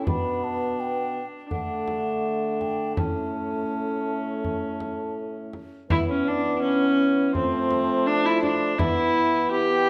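Set in a resonant recital hall with a reverb tail of about 1.4 seconds, this short cut from a longer piece is a courtly, festive renaissance-style consort dance in A mixolydian, moving at a steady 83 BPM in a straight 4/4. A hollow, airy baroque flute carries the melody with a straight, softly attacked wooden tone, while a single bowed viola plays the second line with a rich, reedy gut-string sound and light vibrato. Beneath them, a clear, present trombone provides accompaniment, and a mellow bassoon with a vintage character and light vibrato holds the bass. A deep frame drum, played with soft hands and heard close and dry, keeps the pulse from 0.1 to 9.1 seconds. The phrase is stated twice, with the harmony moving through Bm, D and A before shifting to E5, F and Em in the second pass.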